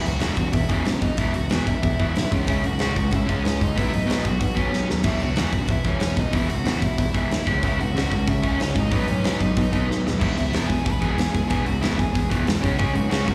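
Driving straight 4/4 punk rock rushes forward in this rowdy, upbeat clip cut from a longer piece, built on a cycle of E5, C#m and B that brightens to a full E chord at 10.2 seconds before landing on C#5. A big rock drum kit enters at 0.1 seconds with a punchy kick, medium-tuned snare, hi-hat and bright crash cymbals in a big room, sitting up front and breaking into short fills at 4.7 and 9.9 seconds. A crunchy overdriven guitar pounds out the riff up front, its picked tone warm and thickened by slapback echo, while a fuzz picked electric bass growls round and low in the background. Above them a dark, smooth lead guitar carries the melody with overdrive and slapback echo. A second, bright overdriven guitar slips in very quietly at 10.2 seconds with a picked riff of its own, and the whole mix is bathed in a reverberant, live-gig atmosphere that sounds like a band playing through a venue's PA.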